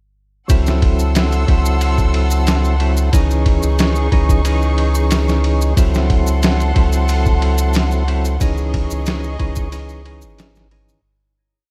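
A cinematic, smoky trip hop piece opens at 0.5 seconds with a gritty, pitched-down sampler-style breakbeat of thumpy kick, snare and ride set in studio reverb, a deep, round analog bass gliding through long notes up front, and close, dry maracas. A fat, lightly overdriven tonewheel organ with percussive third-harmonic attack, tremolo, tape echo and a stopped rotary speaker plays held chords with syncopated pushes, while a lush bowed string section sustains rich chords with vibrato above it. The groove moves between Am6 and C#madd9 over a faint mains hum, and it fades out from 7.5 seconds to the close at 11.0 seconds.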